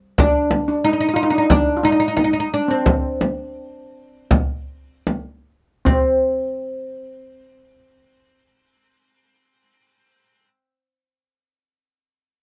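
A straight 4/4 pulse between 74 and 92 BPM slows through the opening seconds of this hypnotic, melancholic Arabic maqam ensemble excerpt in C minor, where a mellow, woody fretless oud with plectrum-plucked double strings carries the melody up front, shimmering, airy cello steel pans struck with medium rubber sticks trace a second line, and a large, close and dry frame drum adds deep percussion until 6.2 s, all set in light reverb with detailed close microphones.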